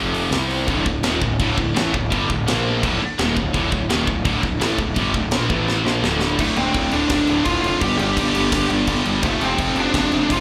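A fuzz guitar and a scooped high-gain guitar open this dark, heavy metal excerpt in D minor at 168 BPM, both distorted, double-tracked and touched with slapback echo as they drive the riff over power chords moving from D to B-flat and A. Beneath them a growly, overdriven picked bass sits up front, while a tight metal kit with bright cymbals, a medium-tuned snare and a tight kick enters at 0.1 seconds in a straight 4/4. A drum fill leads into a half-time passage at 6.4 seconds, where a dark, high-gain lead guitar steps in with a melody over chords shifting to G and F. The whole performance has the feel of a live club gig heard through the venue's PA, with light reverb and a small room ambience around the band.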